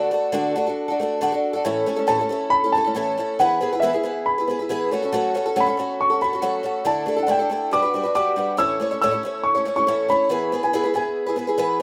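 A straight 4/4 rock groove at 139 BPM in A major (tuned to A4 = 441 Hz) carries this warm, jangly excerpt from a longer piece, where a dark, mellow concert grand piano with short sustain and tape echo plays the melody from E5 to E6 over a woody, boxy, shimmering octave-doubled twelve-string acoustic guitar on old strings, picked up front through chords moving from D to A, E, F#m, Dsus2 and Gmaj7, all in moderate studio reverb with a rough home demo mix.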